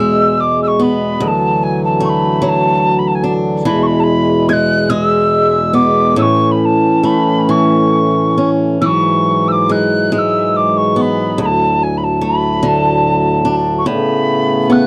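Pastoral and tender, this Celtic slow air drifts in a rubato 6/8 at around 45-50 BPM in E mixolydian, cut from a longer piece. A mellow, hollow mid whistle carries the melody with airy vibrato and a soft attack, over a boxy, picked swing-style acoustic guitar and a reedy, nasal hand-pumped harmonium holding dark, breathing chords. Chords move through E, Dadd9, A and D, and all three parts play throughout the 14.9 seconds in a dry, close 1970s-style studio sound with light reverb.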